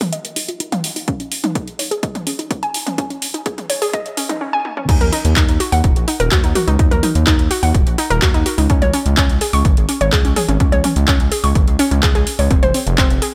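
Melodic techno at 126 BPM in Eb dorian, this dramatic, melancholic cut from a longer piece opens with a build-up where a warbling, lo-fi pluck spins arpeggios through a filter sweep, colored by chorus, cassette-tape wear, dub echo and sidechain pumping. A layered, overdriven deep house kit of crash cymbal, handclaps, metallic hats and toms runs throughout, its hats, toms and cymbals pumping under the sidechain, while a punchy, tape-warm analog kick arrives at 1.1 seconds. A drum fill at 4.6 seconds leads into the drop at 4.9 seconds, where a gritty, aggressive synth bass enters up front, built from square, sawtooth and sine tones with oscillator sync, a moving notch and tube saturation. The harmony moves from open suspended chords in the build-up to stark power chords after the drop, ending on F5. The mix is dry, with little reverb and a high-pass filter, keeping the mellow pluck and saturated bass close and forward.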